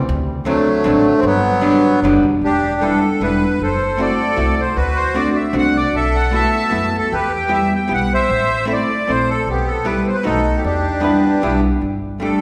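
A wet recital-hall reverb fills this nostalgic, bittersweet musette waltz in E minor, a short cut from a longer piece moving in 3/4 at 153 BPM with a straight feel. A reedy, sweet accordion with light tremolo tuning carries the melody close-miked and up front, while a dark, clean, picked archtop guitar gives hollow-body accompaniment and a woody pizzicato upright bass anchors the harmony through chords such as D7, Gmaj7, F#m7b5 and B7. Near the end, from 11.0 to 11.8 seconds, a vintage hollow-body jazz guitar adds a brief second line in the background.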